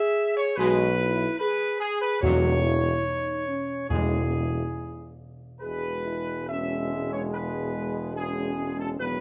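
Captured with close, detailed microphones and light reverb, this solemn, regal classical excerpt in E major at 72 BPM sets a mellow, distant trumpet section carrying the melody over dark, tight French horn chords, joined at 0.6 seconds by a bright trombone section with light vibrato and a warm, roomy tuba with vibrato on the bass, while timpani struck with hard mallets sound up front and articulate on a low E from 2.2 to 5.2 seconds.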